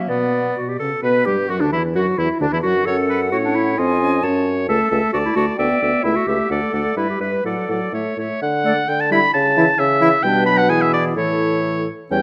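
A present, up-front oboe carries the second line across this quick, lively and graceful classical-period movement for wind quintet, cut from a longer piece and played in 2/4 with a supple, rubato feel. The close-miked concert flute sings the melody with an airy, expressive tone, gentle vibrato and soft attacks. The clarinet adds clear accompaniment, joined by French horn with a mellow glow, light vibrato and soft onsets. Underneath, a dark bassoon, also up front, anchors the bass with light vibrato and soft attacks. The opening idea returns at 8.4 seconds after a longer middle passage, and the harmony settles on A at 11.2 seconds. A moderate recital hall reverb gives the ensemble a natural sense of space.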